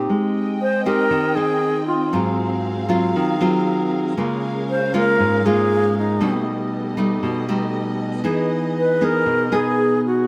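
An airy alto flute with vibrato carries the melody from 0.6 seconds in this relaxed, sophisticated bossa nova excerpt, sitting up front beside a fingerpicked nylon-string guitar with a deep classical tone, while a lush, expressive bowed string section sustains soft-edged chords close behind, moving from Abmaj7 through Db6 and Baug7 to Emaj7 in a lightly reverberant space.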